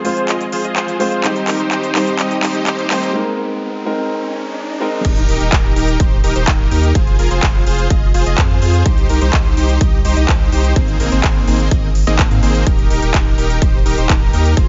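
A huge, detuned supersaw riff with sidechain pumping and tape echo leads this euphoric, anthemic festival progressive house excerpt, first over a dark, boxy grand piano, a crisp-hatted big-room drum kit and a background riser and swell through a filter-swept build-up with a drum fill and short break, then at 5.0 s into a drop where a deep, saturated sub bass and a punchy, layered electronic kick join under light reverb.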